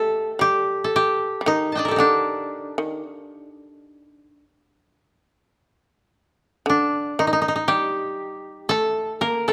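Unhurried and rubato at around 58 BPM in 4/4, this short excerpt of Japanese traditional music in G hirajoshi carries a meditative, austere mood across its 9.5 seconds. The koto leads the melody up front, its fingerpicked tone mellow, dry and woody as it ranges from A3 to A5, while the fretless shamisen sits lower and quieter on a second line, plectrum-plucked with a bright, percussive buzz. Close, detailed microphones and light reverb keep every string articulation clear and intimate.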